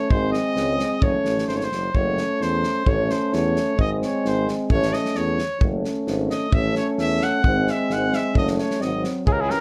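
Bathed in gentle reverb, this bittersweet, restless Balkan brass band fragment swings at 131 BPM in 2/4 in F# dorian sharp4, with a clear, soft-attack trumpet up front playing a solo second line over a vintage euphonium with light vibrato, a dark, smooth-topped French horn, a warm, roomy tuba bass with vibrato, and a loose acoustic drum kit of tight kick and medium-tuned snare, as the chords cycle through F#m, A and G# before a distant second trumpet takes the melody at 9.3 s.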